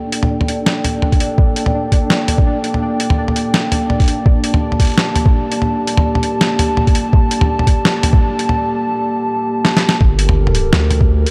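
A moody, detuned analog pad holds a sustained G minor add-nine chord with chorus and sidechain pumping, while a faint, tempo-synced gated texture pulses beneath it in this tense, cinematic half-time drum and bass at 167 BPM with a swung sixteenth feel. Gritty, pitched-down sampler drums with a medium-tuned snare, hi-hat and toms sit up front beside a thumpy, compressed kick, building until the texture drops out at 8.6 seconds for a break and a short drum fill. At 10.0 seconds the drop lands with a deep, long sine 808 bass, fast in attack and saturated through tubes, all inside a dark, lightly reverberant mix from a longer piece.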